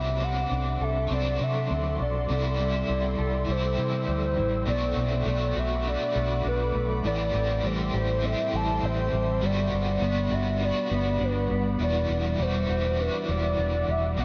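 Dream pop at 101 BPM in 4/4, tuned to A4 = 436 Hz, this blissful, floating fragment of a longer piece drifts through chords from D7/C and C6 to Bm7, Am7, Gmaj7 and Em9, with the change at 4.7 seconds opening into a new section. A warbling, nostalgic lead carries the melody through chorus and digital delay, while an ethereal pad holds airy, detuned sustained chords beneath it. A dark, compressed electric guitar plays arpeggios through subtle chorus and delay, an overdriven hollow-body guitar adds tremolo-shimmered accompaniment, and a round, foam-muted fingered bass sits up front, all bathed in a lush hall reverb with a soft, rolled-off top end.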